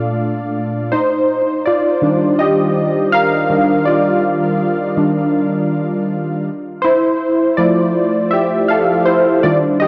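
The rhythm sits in a slow 4/4 at 81 BPM, with a loose 16th-note swing that gives this hip hop fragment a relaxed, unhurried lilt. A single analog synth keys part carries the whole piece alone from 0.0 to 9.9 seconds, its round, detuned sawtooth tone shaped by a filter sweep, a fast attack and a decaying tail, and placed up front. Chorus, cassette tape character, a low-pass filter and analog delay color the keys, lending them a soft, slightly worn haze. In Eb major, the harmony moves from Bbmaj7 to Ebmaj9 at 0.9 seconds and on to Fmaj9 at 6.5 seconds, keeping the mood cosy and mellow. A long plate reverb soaks the dreamy mix, and the short clip reads as a piece lifted from a longer track.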